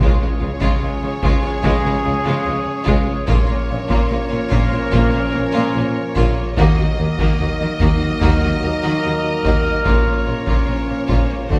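A steady 4/4 pulse at 73 BPM with a straight feel drives this cinematic, epic orchestral excerpt, cut from a longer piece, its mood adventurous and triumphant. Up front, solo taiko drums struck with hard sticks sound compressed and saturated, while a very quiet, round timpani on soft mallets sounds only in the first 1.2 seconds. A lush, expressive violin section carries the melody from a distant place with vibrato, as a second violin section with a focused, smooth top holds a supporting line behind it and a rich viola section adds accompaniment. Dark, roomy French horns and a mellow, tight woodwind section sustain chords in the background, and a mellow trumpet section with a vintage tone punctuates with stabs. The low end is built from a clear tuba, a double bass section with soft attack and portamento, and a cello section playing bass, all over chords moving from Db to Bbm, Ebm and back to Bbm. 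A recital hall reverb lends a churchlike depth to the whole.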